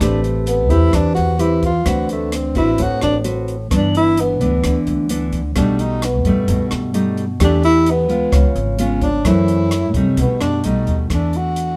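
A breathy, close-miked tenor saxophone carries a wistful, smooth bossa nova solo from the start, its dark subtone, soft attack, scooped notes and vibrato sounding whispered and intimate up front. A full-bodied, fingerpicked nylon-string guitar shares the foreground, while a woody pizzicato upright bass and a dry, airy cocktail drum kit with a punchy kick, hi-hat and rim click sit further back, the band heard live together in one room with moderate studio reverb. The chords move through Am9, D6, G6 and Baug7 before a turn through Em7, C#7, F#m7b5 and B7b13, and this passage, cut from a longer piece, breaks off on E9sus4 at 11.1 seconds.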